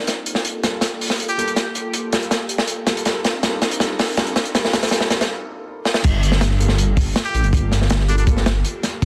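Nostalgic and dark, this drum and bass cut with a jungle lean moves at 161 BPM in G minor, drifting from Gm9 to Cm9 and back. An airy, breathy pad with chorus holds sustained chords in the background from the start, under a filter sweep through the build-up, while a crunchy, saturated breakbeat kit sits up front with a tight kick, medium-tuned snare, dark cymbals and a rolled-off top, rolling through a long drum fill. A concert grand piano adds low-passed stabs soaked in dub echo, and a nasal, straight-muted trumpet with vibrato and scooped notes, coloured by gritty 12-bit sampler texture and dub echo, offers a brief jazz-style phrase near 1.3 seconds before returning later. After a short break, the drop lands at 6.0 seconds, where a deep, rumbling detuned saw bass enters with a beating, saturated weight. The mix is dense and heavily limited, with light reverb, vinyl crackle and lossy compression artefacts lending a worn, archival feel to this fragment of a longer piece.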